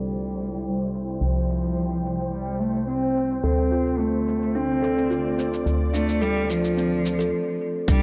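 Organic downtempo in D minor at 108 BPM, this earthy, meditative passage is cut from a longer piece and moves in a straight 4/4. A rich, smooth cello carries the melody up front with vibrato and an analog delay, over an ethereal pad whose detuned, slow-blooming chords shimmer with ensemble chorus and pulse with sidechain pumping. Beneath them, a woody, round FM bass sits low and dark with transformer saturation, while a breathy, wind-like noise texture hovers in the background until 7.3 seconds, and a gritty, sampler-style electronic shaker and hi-hat tick along from the start. At 3.4 seconds, as the harmony shifts from C to Dm7, a close-miked kalimba joins with ringing, hollow-box arpeggios trailed by analog delay. A filter sweep runs through the passage, a brief break opens at 7.3 seconds, and a tight, tape-tinged electronic kick lands at the very end, all within a dry, lightly reverberant hardware sound shaded by a low-pass filter.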